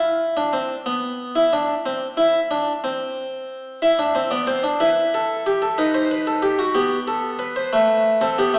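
The recording has a lo-fi, AM-radio character, set in a recital hall with a reverb tail of 1.7 seconds and heard from further back in the room. This is a serious, contemplative baroque-style fugue in three parts for solo harpsichord, taken from a longer piece and lasting 8.6 seconds. It moves at 61 beats per minute in dotted quarters, in a straight 12/8, with the instrument tuned to A4 = 441 Hz. The harpsichord sits up front and close-miked, with a plucked, round, full French-style tone from a single set of strings, ranging from A3 to E5. The music opens with an unharmonized line, settles on E5 at 3.8 seconds, moves to B over D# at 5.8 seconds, and reaches a B7 sonority over A at 7.7 seconds.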